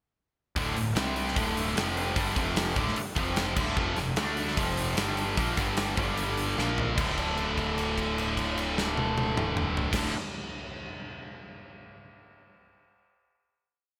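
At 0.6 seconds this driving, heavy hard rock piece in D minor bursts in at 150 BPM, with two electric guitars pounding out a power-chord riff: a cranked stack guitar with overdrive and analog chorus, and a scooped, high-gain guitar with distortion sitting up front. A fuzzy picked bass plays driving eighth notes that double the riff, while a huge arena drum kit, drenched in gated reverb, adds bright cymbals, a medium-tuned snare and a punchy kick. A drum fill at 6.6 seconds leads into a final chord held from 7.0 seconds, set in a bright 1980s-style digital production with light small-room ambience.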